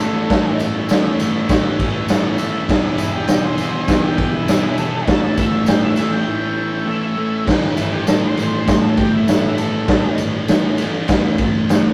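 From the first beat, a double-tracked, up-front fuzz guitar riff and a raw garage drum kit with a punchy kick and medium-tuned snare drive this raw, swaggering 100 BPM garage rock excerpt in A major, while a dark octave-fuzz lead guitar carries the melody, a buzzy vintage combo organ holds chords in the background (with a fill at 1.5 seconds) until 7.4 seconds, and a jingly, distant tambourine rattles underneath, all moving from A to E and back before a break at 6.3 seconds, in a rough rehearsal-room recording with tube saturation and stone-room reverb.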